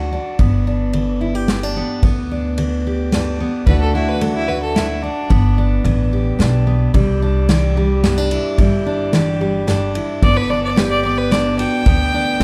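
A biting, close fiddle with light vibrato and an airy bow steps up front at 3.7 seconds and returns at 10.2 seconds, playing a second line over this easygoing, heartfelt honky-tonk and classic country tune in G major at 110 BPM in 3/4. Beneath it, a full-bodied jumbo acoustic guitar, picked with audible finger squeak, carries the accompaniment. A thumpy, woody pizzicato upright bass and an unplugged kit played with bundle sticks (tight kick, medium-tuned snare, ride cymbal) fill out the bed, all set in a dark production with moderate recital hall reverb, in a clip taken from a longer piece.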